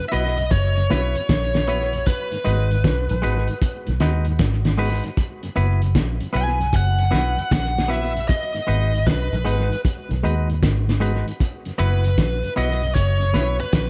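Roots reggae at 77 BPM in 4/4 with a swung sixteenth-note feel, this short cut from a longer piece has a hypnotic, meditative mood. Up front, a bright, overdriven lead guitar carries the melody, its picked lines coloured by tape echo. A dark, round, foam-muted electric bass anchors the low end prominently, while a cloth-damped drum kit of kick, snare and hi-hat sounds muffled, gritty and lo-fi, with a fat snare, a tight kick and a rolled-off top. In the background, a mellow tonewheel organ adds a lightly overdriven shimmer through chorus vibrato and a slow rotary speaker. A clean, compressed semi-hollow electric guitar fills in the accompaniment with its hollow-body tone. The harmony sways between F#7sus4 and G#m7 under light reverb, and all five parts enter within the first tenth of a second and play on until between about 13.6 and 13.9 seconds.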